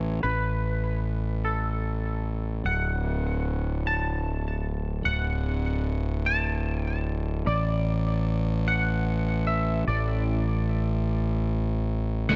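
A growly, fuzz-laden fingered bass opens this cinematic, hopeful post-rock excerpt in 6/8, joined at 0.2 seconds by a clean, twangy guitar melody shimmering with chorus and delay over light reverb, while a bright, double-tracked distorted guitar riff enters only at 12.3 seconds as the chords move from Asus2 through D to Asus4.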